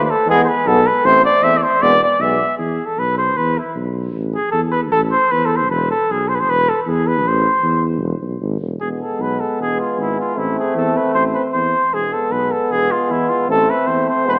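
A vintage-toned flugelhorn leads this fiery, virtuosic Balkan brass band piece, carrying the melody up front with a warm, light vibrato in a classical style. Beneath it, a dark, punchy tuba holds down the bass throughout, while a distant, roomy euphonium with its own light vibrato and a brilliant trombone set in the background add accompaniment at the opening. The two drop out at 2.4 seconds, and from 2.6 seconds the flugelhorn plays a solo over the tuba until the pair rejoin at 8.8 seconds for the closing stretch. The 2/4 groove carries a gentle swing on the sixteenths, and the harmony moves between E and A minor. A wet concert-hall reverb surrounds the band, and the overall sound has the character of a small speaker, in this brief cut from a longer piece.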